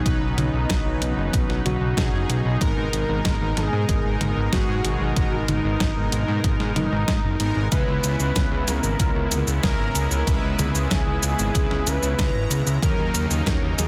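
Dreamy and romantic, this synthwave passage, cut from a longer piece, moves at 94 BPM in a straight 4/4, drifting through Badd9, G#madd9, C#m7 and D#m7 over about 14 seconds. A velvety synth lead carries the melody between D#4 and B4, its smooth, detuned tone thickened by a sub octave and touched with vibrato, chorus and tape echo. Beneath it, a brassy, warbling analog pad holds sustained chords in the background, its soft attack and filter swell pumping gently with sidechain, while bold analog synth brass adds fat, chorused stabs that reach up to A#5. The fat, detuned sawtooth bass sits up front, sustaining low notes from F#1 to G#2 with a filter sweep. A punchy, tape-warm electronic kick anchors the groove alongside a clean 12-bit sampler-style drum machine playing cabasa, hi-hat, toms and a fat snare, both drum parts set in studio reverb. The whole track is lightly reverberant and polished into a dense, heavily limited modern master.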